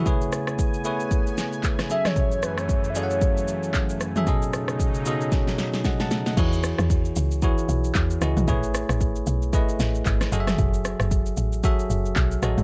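A swung sixteenth-note groove in four drives this soulful, deep amapiano excerpt, built on an electronic, layered deep house kit with a deep kick, fat snare, handclaps, rim clicks, shaker, toms and crash cymbal sitting up front. A bell-like, bright tine electric piano plays clean, direct chords throughout, moving through lush ninth and thirteenth harmonies. In the opening half, a smooth, detuned sawtooth pad holds sustained chords with chorus and sidechain pumping, and from 1.9 seconds a hollow, soft clarinet-like synth lead briefly sings a short vibrato-tinged melody with chorus and delay. A drum fill at 5.3 seconds sets up the drop at 6.4 seconds, where the pad falls away and a woody, punchy FM log drum bass enters beneath the piano and drums with fast-attack, decaying low notes. The production is dark and warm, with little reverb, keeping every part close and intimate.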